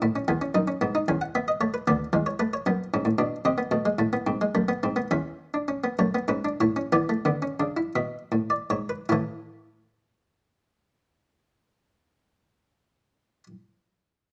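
In a straight 12/8 pulse of 49-76 BPM in dotted quarters that slows from 2.9 to 9.1 seconds, this lively yet stately baroque-style three-part fugue in A major is cut from a longer piece, and a solo buff-stop harpsichord in Flemish style plays it with a muted, lute-like, plucked tone that sits dry and up front in a dark production with light reverb, moving from E through Bm/D, D#dim7 and E7 before settling on A as a new section begins at 9.1 seconds.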